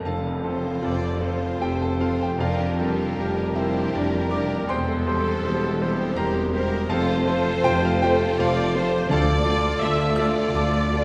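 Passionate and tragic, this romantic movement for piano and orchestra in F major moves in a rubato 3/4 at roughly 73-87 BPM, with a clear concert grand piano carrying the melody up front, its deep bass and long sustain ringing openly. Dark, bowed double basses with portamento, a mellow, very quiet tuba and focused cellos sit in the background beneath lush violas, a rich, expressive violin section on a second line and a very quiet violin section also on the melody. A dark tam-tam sounds faintly from the opening until 3.1 s, soft-mallet timpani enter at 9.1 s as the harmony reaches D minor, and a wet concert hall reverb sets the listener further back in this passage cut from a longer piece.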